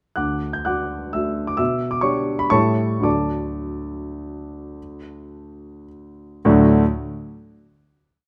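A warm concert grand piano carries this brief classical waltz alone, entering at 0.2 seconds and playing until 6.8 seconds. Its deep bass and short sustain give the playing a crisp, sparkling character, with the tune set in filled octaves above a waltz bass, the whole part ranging from D2 up to G6. The mood is playful, moving in 3/4 at a rubato pace that stretches between 102 and 141 BPM. In D major, the harmony passes from D through G/B and A7 before returning home to D, and a final chord arrives at 6.5 seconds to close the whole piece. The instrument sits up front, captured by close, detailed microphones within a moderate recital-hall reverb.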